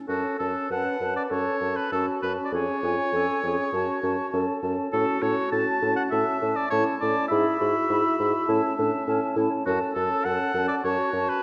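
Cheerful and graceful, this quick classical-period movement for wind quintet moves at 101 BPM in 4/4 with a rubato feel, set in F# minor and cut from a longer piece. A hollow, pure concert flute carries the melody with vibrato and tongued notes, heard close and intimate, while a clear oboe sits up front with light vibrato, weaving a second line. Beneath them, a dark clarinet plays accompaniment from a distant, roomy place in the background, joined by a warm French horn whose smooth top lends gentle support. A mellow bassoon, also up front and touched with light vibrato, anchors the bass. The harmony moves from F# minor toward A major and back again, and the whole ensemble rings in a wet concert hall reverb with a softened, rounded high end.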